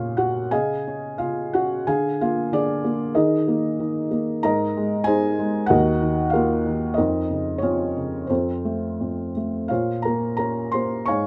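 Classical solo piano in Bb minor, cool and moody, moving with a rubato feel at around 84 to 97 BPM in 4/4. A felt-muted upright piano plays alone throughout this 11.3-second excerpt, its thick-felt tone soft, dark and intimate, sitting up front in a small room with moderate reverb. The harmony drifts from Bbm through Dbadd9, Ebsus4 and Ebm before settling on an F chord and closing on Bbmadd9 at 9.7 seconds.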